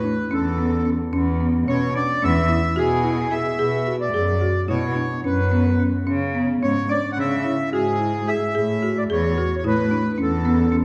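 This contemporary instrumental chamber piece, cut from a longer work, moves in an uneven 9/8 metre with a shimmering, hopeful mood. A folk marimba played with medium mallets opens at once, its woody, rustic hardwood bars spinning dry arpeggios in the middle register. An up-front accordion carries the melody from the start, its reedy tone showing a slow beating. A bowed cello joins at 0.3 s on the bass line, expressive and sung with vibrato and portamento. The harmony drifts from Asus2 through E6, Bm and C#m before returning to Asus2. A wet recital hall reverb with a 1.7-second decay places the trio further back in the room.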